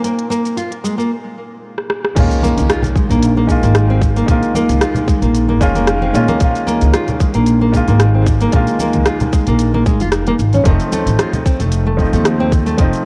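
A lightly swung sixteenth-note feel in 4/4 carries this earthy, meditative organic downtempo excerpt, where a soft felt-muted upright piano with sidechain pumping and digital delay and a full-bodied, fingerpicked nylon-string guitar with delay play over crisp hats, rim clicks, shaker and crash from a tape-warm organic electronic drum kit, until a break and drum fill lead at 2.2 seconds into a tight, up-front electronic kick, a thumpy, woody pizzicato upright bass and a very quiet electronic impact, with soft-handed, saturated congas arriving at 2.4 seconds, all under light small-room reverb and the worn, warbly pitch drift of old cassette tape.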